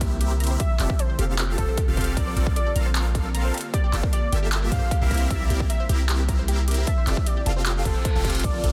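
A dense, heavily limited modern master with digital ambience frames this lush, bright future bass excerpt at 153 BPM in a half-time feel, moving through rich chords like F69, Bbmaj9 and Gm9. A deep, sine-toned 808-style bass and a punchy, overdriven electronic kick sit up front, joined by an overdriven dance kit with metallic hats and handclaps, while huge, detuned supersaw chords with phaser carry the riff and an ethereal pad with ensemble chorus and reverb lingers in the background beside a sidechain-pumped pluck arpeggio with digital delay. A velvety synth lead with vibrato, chorus and dub echo enters at 0.6 s to sing the melody, and a reverse cymbal at 7.9 s leads into a drum fill at 8.2 s.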